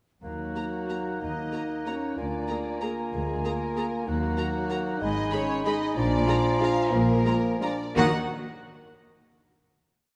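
Classical orchestral ballroom waltz, sweeping and bittersweet with a rubato lilt, where a warm, floating violin section carries the melody from 0.6 s over a darker, woody second violin line, airy silver flute, oboe, vintage clarinet and bassoon, mellow French horns doubling the tune at the octave, a close viola section with after-beat chords, and cellos on the beats doubled by double basses, all in a wet scoring-stage reverb, slowing from 5.5 s into a final chord at 8.0 s.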